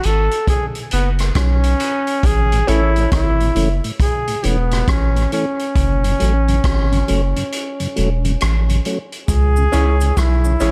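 A brilliant, up-front trombone with light vibrato and tape echo carries the melody over a deep, round sub bass, a mellow tonewheel organ turning on a slow rotary speaker, vintage drums of punchy kick, hi-hat and rim click, and bright grand piano stabs that drop out at 2.9 seconds, all in a hypnotic, spacious dub reggae excerpt at 68 BPM with a swung 16th feel, before a cabasa enters at 9.3 seconds as the harmony shifts to C#m and a slightly broken-up electric guitar with tape echo joins the returning piano at 9.7 seconds.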